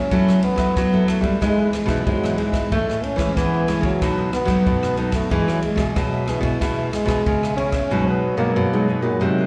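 Joyful and playful, this short samba-choro fragment puts a breathy, mellow trombone present on the melody, its scooped notes and vibrato carrying a jazz feel over a crisp, bright cavaquinho and a fingerpicked nylon-string guitar in the background, all touched by slapback echo. A second, full-bodied nylon-string guitar with fresh strings and audible finger squeak holds down the bass, while an open jazz drum kit with dark cymbals, a boomy kick and rim clicks keeps time until 7.9 seconds. At that point a distant, whispered tenor saxophone with soft subtone slips in for a second line, the whole live performance ringing through a venue's PA into a recital hall's reverb.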